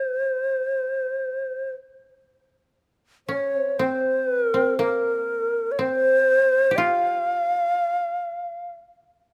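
Close, detailed microphones and a light reverb give this short cut from a longer piece of Japanese chamber music an intimate, present sound. The mood is austere and calm, with a rubato feel loosely around 55-64 BPM in 4/4, set in C in sen. An end-blown bamboo shakuhachi carries the melody up front, its breathy, bright tone shaped by soft attacks and an expressive vibrato. Beneath it, the koto plays a second line in a lower register, its dry, woody voice plucked with fingerpicks and also placed close to the listener. The passage shifts into a new section at 2.8 s, and the shakuhachi falls silent at 8.7 s, leaving the koto to finish alone by 9.0 s.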